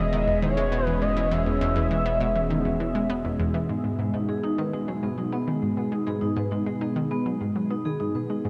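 A huge, wet ambient reverb with a long tail surrounds this hypnotic, expansive ambient fragment in G# minor, moving at 101 BPM in a straight 4/4 over an Emaj7 chord that shifts to G#m at 3.7 seconds. A warbling, vintage portamento lead with vibrato, chorus and tape echo sings a brief melody until 3.1 seconds. Beneath it, a lush, thick unison pad sustains chords and a bright, detuned analog pluck repeats a riff with chorus and tape echo, while a deep, round analog bass holds E1 for the opening moments. From 3.7 seconds a mellow, ringing vibraphone played with soft mallets joins the pad and pluck with filtered, echoing arpeggios.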